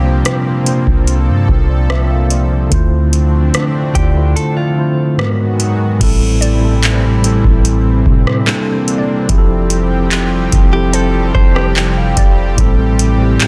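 A booming analog drum machine with a deep kick, metallic hats, handclaps and rim clicks sits up front in this longing, late-night contemporary R&B passage, its kick dropping away at 4.4 seconds before returning. A mellow tine electric piano carries the chords over a soft, round 808-style bass and a lush, detuned unison pad pumping with sidechain and chorus, while a bright, direct-recorded clean guitar adds brief delayed arpeggios from 4.0 seconds. In the second half a glassy wavetable pluck glimmers in the background and the electric piano plays a fill at 10.9 seconds, all within a dense, heavily limited and fairly dry modern mix.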